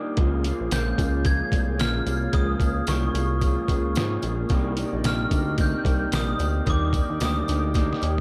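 Hazy and dreamy, this indie and bedroom-pop excerpt at 111 BPM with a 16th-note swing pairs a slightly broken-up electric guitar, carrying lush chorus and warbly pitch drift, with a thick, detuned unison pad in the background, while a glossy, saturated synth bass and a gritty, pitched-down, sampler-style trip hop kit with a thumpy kick enter at 0.2 seconds, a jingly tambourine sits in the background, a bright, bell-like glockenspiel melody sparkles in from 0.7 seconds, the harmony moves through Db6, Cm9 and Ebmaj7, and a drum fill arrives at 7.7 seconds in a close, dry sound.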